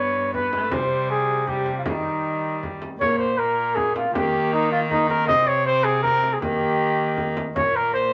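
A mellow, up-front cornet with light vibrato carries the melody over a nasal, gut-strung viola, a close, reedy cello bass and a deep frame drum in this courtly, solemn renaissance-style consort dance in 3/4 at 158 BPM, cut from a longer piece and set in a moderate studio reverb.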